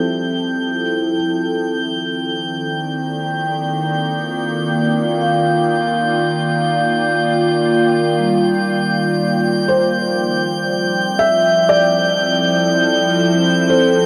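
Bathed in a huge, wet reverb with a long 8.3-second tail, this luminous ambient fragment at 60 BPM rests on an up-front, morphing wavetable pad with chorus, drifting from Fmaj9 to Ebmaj7 and back, while soft-mallet vibraphone arpeggios fade in from the background with a mellow ring and a diffuse delay, a glassy harmonics texture hovers high above, and a dark, felt-muted upright piano plays an intimate melody briefly at the start and again from 9.7 seconds.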